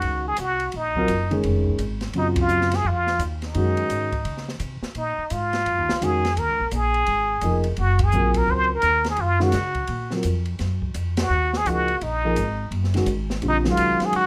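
A swung 4/4 pulse at 170 BPM drives this intense, hypnotic modal jazz excerpt, cut from a longer piece and resting on a single Ebm11 chord in Eb dorian. Out front, a trumpet with a plunger mute carries the melody as a solo, its bright, wah-wah voice colored by light vibrato and scooped notes. A mellow upright piano supplies the accompaniment, intimate and vintage in tone, with audible action noise and long sustain. Beneath it, the upright bass is played pizzicato, woody with steel-string bite and placed up front. The acoustic drum kit sits low in the mix with a small-room sound, shadowy cymbals, a high-tuned snare and a boomy kick, and it drops out at 14.2 seconds. Moderate studio reverb surrounds the band, which hits accents together at 2.3, 8.0 and 11.1 seconds.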